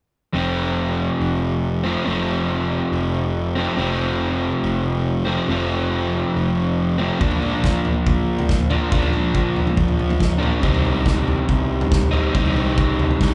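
A straight 4/4 indie rock pulse carries this cool, moody excerpt, where a dark, overdriven semi-hollow guitar riff sits up front over a fuzzed, picked electric bass from the outset, and a loose acoustic drum kit with tight kick, medium-tuned snare and toms enters at 7.2 seconds in a pumping small-room sound, all captured as a band playing live in one large studio with moderate reverb while the chords move from F to Bb to Cm.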